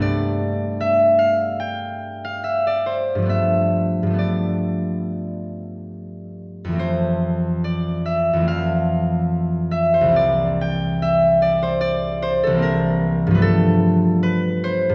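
This classical solo harp passage, cut from a longer piece, drifts in a dreamy, serene mood with a free, rubato feel in 4/4, tuned slightly high with A4 at 445 Hz. The concert harp is fingerpicked and ringing, spanning C2 to G5 as it moves through Gadd9, G9, Fmaj7 and C9 before returning to G9 at 13.4 seconds. Its warm tone sits up front in the mix, though it is heard from further back in a scoring stage with a moderate reverb of 1.9 seconds.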